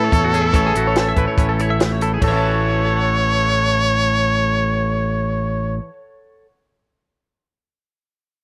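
Math rock and midwest emo in 5/4 at 144 BPM, this short, intricate and playful fragment from a longer piece sits in A major, where a brilliant, forceful trumpet carries the melody up front with vibrato, scooped notes and a slapback echo. Two bright, twangy twelve-string electric guitars fill in beneath, one playing accompaniment and the other picking arpeggios touched with slapback, while a growling, overdriven fingered bass pushes forward. A compact cocktail kit with a high-tuned snare, tight kick and dark cymbals plays only until 2.3 seconds, all set in a small room with light reverb.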